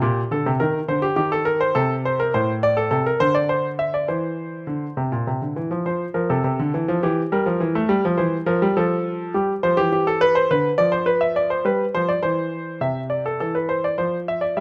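Contemplative and serious, this classical, baroque-style two-part invention for solo concert grand piano moves in a straight three-beat metre through a short passage cut from a longer piece. The piano sounds clear and worn, with deep bass, short sustain and a natural, up-front presence, captured by close, detailed microphones within a moderate recital hall reverb. An opening idea gives way at 5.9 seconds to a contrasting passage, and the first material returns at 12.8 seconds before the passage breaks off.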